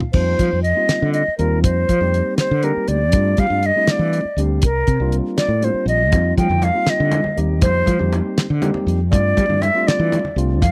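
This slick, bright electric jazz fusion piece opens with a clean tine electric piano, heard through its built-in speakers, and a damped 1970s drum kit with a fat snare and tight kick. A concert flute and a fretless bass join almost at once. In 6/8 at 80 BPM with a straight feel in F mixolydian, the flute carries the melody up front with a pure, straight tone and crisp attack, while the electric piano accompanies softly beneath it. The fretless bass also sits up front, bright and direct through an amp, and the mid-forward, acoustic drums cover crash, hi-hat, kick, snare and toms. Ringing, medium-tuned congas enter at 6.1 seconds with a vintage, band-limited sound kept in the background, as the harmony moves through F9sus4, G9sus4 and C9sus4 before returning to F9sus4 and G9sus4, all in a dry, close 1970s-style studio sound with little reverb.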